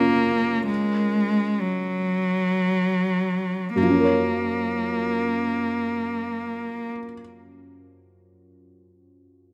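Neoclassical piano and strings in free time, hopeful and intimate, where a rich, smooth cello with vibrato sits close and up front as a second line until 6.9 seconds over a felt-muted upright piano whose dark, boxy accompaniment runs to 9.5 seconds, the opening slowing down on an F#maj7 chord, all set in a lush hall reverb within a rough home demo mix cut from a longer piece.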